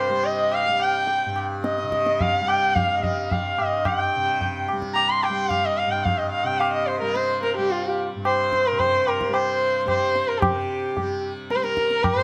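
Longing and solemn, this short cut from a longer Hindustani classical performance unfolds in raga Malkauns on G, set in 3/4 at around 109 BPM and gradually speeding up. A single bowed sarangi carries the melody up front, its rich, focused tone gliding between notes with portamento and a light vibrato, a smooth top, and a halo from its sympathetic strings. Beneath it, a hand-pumped harmonium traces a very quiet second line across the same register, its reedy, nasal voice seeming to breathe. A softly plucked tanpura holds a bright, buzzing drone that shimmers low in the mix. The low-tuned tabla enters at 0.2 s, ringing yet close and dry. A light reverb gives the ensemble a gentle sense of space, and the music moves into a new section at 10.4 s before the cut ends at 12.2 s.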